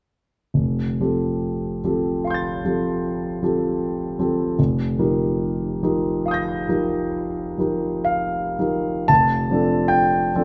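A warm concert grand piano, deep in the bass and natural up front under close, detailed microphones, plays a serene, hazy impressionist solo in a rubato 5/4 through colored chords in a moderate recital hall reverb, moving to a new section at 9.1 seconds in this brief cut from a longer classical piece.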